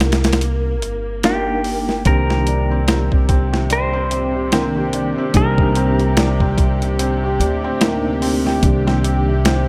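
A gritty, pitched-down boom bap sampler-style drum kit with a thumpy kick and high-tuned snare sits up front in this smoky, melancholic trip hop excerpt, joined by a woody pizzicato upright bass, a reedy electric piano with harmonic tremolo and tape echo, a background string section with sampler grit, and a clean hollow-body electric guitar melody with spring reverb that stops at 7.0 s, while a muted, intimate felt upright piano enters with arpeggios at 2.1 s and a tense, detuned bowed-like drone creeps in at 3.3 s over a lingering Cm7.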